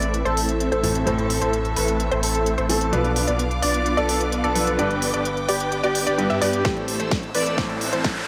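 An airy, dreamy lead with chorus and delay carries the melody over soft felt-muted upright piano, background strings, a bright unison pluck arpeggiating, lush detuned supersaw chords under a sweeping low-pass filter and phaser, and a deep saturated sub bass, these supporting parts all pumping with sidechain in this euphoric festival progressive house build-up in A minor at 129 BPM. A pop drum kit with fat snare and crisp hats drives the passage through Am, Bdim and G, and a punchy, up-front electronic kick enters at 6.6 seconds, just before a drum fill begins at 6.7 seconds. A background riser joins at 7.2 seconds, and a concert hall reverb gives the whole build a spacious, powerful sheen.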